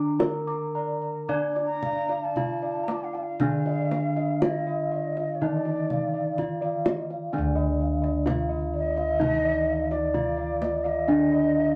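This excerpt of Javanese gamelan in D pelog opens at once with bronze metallophones and bossed gongs, moving at a slow, hypnotic 54-64 BPM in a straight 4/4. A ringing metallophone struck with a wooden mallet carries the melody between D4 and D5, over a lower metallophone accompaniment and a deep, round bossed-gong bass that has a vintage, band-limited colour. High above, bossed gongs and a paired-tuned metallophone play arpeggios between D5 and D6, their mellow, beating bronze and shimmering beats giving the texture its glittering surface. The tight, acoustic kendang comes in at 0.2 seconds, and at 1.7 seconds a hollow, airy bansuri enters up front as a second line, its bamboo tone tongued and touched with vibrato. A moderate club reverb gives the ensemble a short, present room sound as the music passes into a new section at 7.3 seconds before the excerpt is cut off.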